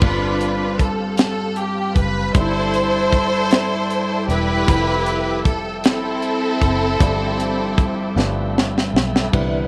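A lush, bowed string section carries the melody up front, its close, even ensemble sound shaded with vibrato until it stops at 8.5 seconds. This is slow, soulful and hopeful gospel at 52 BPM in a straight 6/8, cut from a longer piece and moving through rich extended chords such as G9sus4, C69/G and Fmaj9. A natural-toned grand piano plays accompaniment beneath it, while a smooth, clean tonewheel organ holds sustained chords in the background, with a gentle chorus vibrato, audible key click and a stopped rotary speaker. A fingered electric bass supplies a dark, round, foam-muted low end with a direct, amped character. The tight, acoustic funk drum kit sits up front with a high-tuned snare, tight kick, hi-hat and crash, and it plays a fill from 8.2 to 9.3 seconds. A moderate spring reverb and a small room ambience lend the recording a sense of space.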